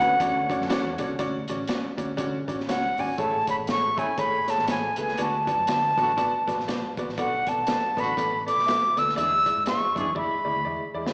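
Opening together, a breathy, up-front flute carries the melody over woody upright piano, a gritty overdriven tonewheel organ through a slow rotary speaker that drops out at 1.2 seconds, round foam-muted electric bass and a crunchy, dark breakbeat kit, with a smooth horn section adding a second line from 3.2 seconds and a drum fill arriving at 10.2 seconds in this uplifting, joyful swung 1960s-style soul cut, heard as a live gig through the venue's PA with slapback echo on the flute, piano and horns and tape echo on the flute.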